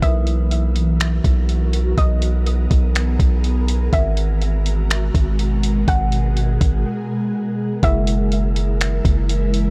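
A half-time groove at 123 BPM in 4/4 anchors this atmospheric cloud-rap cut from a longer piece, set in G# minor with a spacious, ethereal mood. Up front, a compressed, pitched-down sampler-style kit lays down muffled finger snaps, hi-hat and a thumpy kick, while a deep, sine-toned 808-style bass holds long, decaying notes beneath it. An airy, full-bodied pad sustains mellow chords through ensemble chorus, phaser, its own built-in reverb and a sidechain pumping, moving from Bmaj7 to G#m9 and on to F#9. Above it, a soft, round pluck with a dark, filtered edge, chorus and tape echo carries the melody until 8.8 seconds. A worn, very quiet celesta with felt hammers adds a delicate, bell-like shimmer that sits slightly out of tune. A brief break arrives at 6.9 seconds before a new section begins at 7.8, and the overall room stays dry and close.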